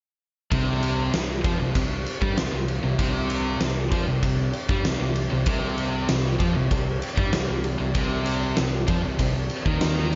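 Hard rock at 97 BPM in a straight 4/4, this short excerpt from a longer piece carries an anthemic, powerful mood and is tuned slightly below standard pitch, at A4 = 436 Hz. From 0.5 s to 10.2 s, every part plays together over a single C5 power chord: a huge acoustic arena drum kit sits up front with a punchy kick, a fat snare and bright ride cymbal. Two picked electric guitars each play a low riff, one a scooped, high-gain distorted tone with a bright edge, the other an overdriven semi-hollow body that sits further back with a warmer, hollow character. A fingered electric bass adds an amped, growly low end beneath them. Tucked in the background, a smooth, detuned sawtooth pad with a soft attack and chorus holds sustained chords higher up. A lush hall reverb gives the mix a big arena sound, though its top end stays rounded, with nothing above 7.5 kHz.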